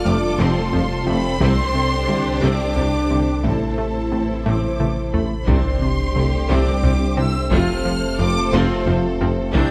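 This cinematic hybrid orchestral and electronic film score excerpt moves at a slow 59 BPM in 6/8, futuristic and vast, as a distant, intense high violin melody with lush vibrato soars over a focused second violin line, smooth violas, a dark, moody analog pad treated with chorus and phaser, and a very quiet, soft felt-muted upright piano with audible action noise. Beneath them sit a deep sine sub bass, a punchy, funky analog bass riff, a woody wave-folded pluck playing arpeggios, and a very quiet low brass and string foundation of mellow tuba, distant cellos, double basses, tight French horns and close-miked trombones holding chords through F, Csus2 and Am. Taiko drums with heavy sticks enter at 0.7 seconds and play a fill from 4.5 seconds, leading into a huge, dark impact at 5.5 seconds, all set in a moderate scoring-stage reverb.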